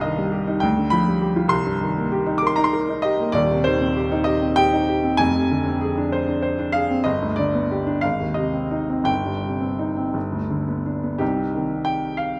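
A romantic classical character piece for solo piano, bittersweet and brooding, in which an open, up-front baby grand moves in a rubato 6/8 at 55-68 BPM through C minor harmonies such as Cm, Dm7b5/F, Ab and G, spanning Eb1 to D6 and heard through close, detailed microphones in a moderate recital hall reverb of 1.6 s before the fragment breaks off just after a new section begins at 11.2 s.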